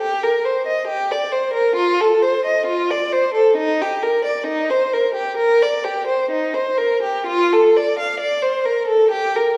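A wet recital-hall reverb with a 1.6-second decay surrounds this short cut from a longer classical piece, a baroque-style suite movement for unaccompanied violin. A single bowed violin sits up front and plays alone for the full 9.6 seconds, its rich tone shaped by vibrato, soft attacks and expressive portamento. The rubato phrasing gives the passage an introspective, solemn mood.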